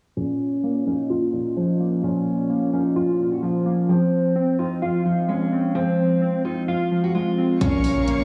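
Menacing and melancholic, this short cut from a longer trap-flavoured hip hop piece in Bb minor moves at 129 BPM with a half-time feel, as a bright, picked steel-string acoustic guitar carries the melody up front over warbling, detuned lo-fi synth keys whose nostalgic tone rides a filter sweep from 0.2 to 7.6 seconds, both coloured by cassette tape, with tape echo on the guitar and chorus on the keys. At 7.6 seconds the drop arrives: a boomy 808-style bass on Bb1, a trap kit with a hard-clipped kick and bright hats, a very quiet electronic impact, and lush bowed symphonic strings holding chords high above. The chords move from Bbm to Fm and back, and the whole takes on the light small-room reverb of a home cassette recording.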